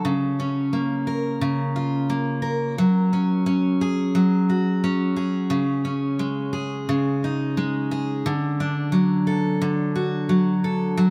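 Carefree and sunny, this short pop passage moves at an easy 88 BPM in a straight 4/4 feel. A single picked steel-string acoustic guitar carries the whole clip, playing solo from start to finish across a range from C#3 to A#4. The dreadnought tone is full-bodied and sits up front, with digital delay trailing the notes. A wet plate reverb with a long 3.6-second tail gives the guitar a spacious, glowing halo. The harmony drifts from A#m/C# to F#sus2 at 2.8 seconds, then C#sus2 at 5.5 seconds, before landing on D at 8.2 seconds, and the clip is cut from a longer piece.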